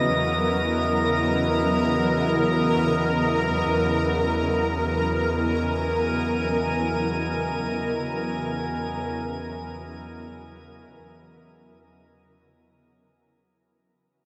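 In free time, this weightless, luminous ambient excerpt in E lydian rests on a single Emaj7 chord, with a bright, ethereal pad up front holding sustained chords through chorus and its own reverb, a reedy bowed double bass section on a low E, a very quiet evolving analog drone, and a glassy, drifting glass-harmonics texture high above, all bathed in a huge, wet room reverb as the music fades out from 2.2 seconds to the cut at 13.6 seconds.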